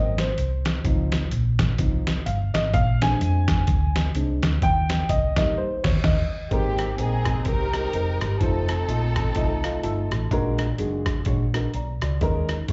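Jubilant and hopeful, this swung, uptempo gospel excerpt, cut from a longer piece, opens with a dark, woody, slightly detuned upright piano taking a solo with slapback echo, over a round, hollow-body electric bass and a gritty, pitched-down, sampler-style trip hop drum kit with a thumpy kick and overdrive. After a band accent at 5.6 seconds, a lush, bowed studio string section with vibrato carries the melody from 6.5 seconds, and the mellow piano adds a fill at 9.4 seconds. It sounds like a live gig heard through the venue's PA, with club reverb and a muffled top end.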